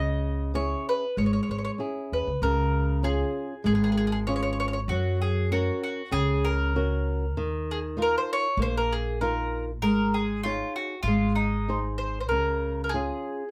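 A double-strung, woody mandolin carries the melody from the start, over fingerpicked flamenco guitar and a pizzicato upright bass with steel strings, all close and up front in this wistful, romantic excerpt of an Italian folk serenade at 97 BPM in Db major, set in a moderate studio reverb. At 4.9 seconds a second, bright mandolin enters with a softer supporting line, staying until 11.8 seconds. Underneath, the harmony shifts from C#m through Db, Gb, Ebsus2 and Absus4 before resolving back to Db.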